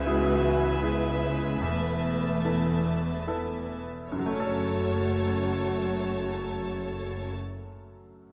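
An airy alto flute carries a longing, expressive melody in this moving, cinematic film-score excerpt in F# minor, set in a rubato 3/4 at 69-79 BPM that slows over the first 4.1 seconds as the harmony moves from C#m7 through Esus4 to F#m. A distant violin section also carries the melody up high, while a lush, close second violin line and a focused viola section in the background fill the middle. Beneath them sit a smooth, even cello section, an intense double bass section and a brilliant baby grand piano accompaniment. Close, detailed microphones and light reverb frame the ensemble, and the piano rings on alone after the other parts stop near 7.4 seconds.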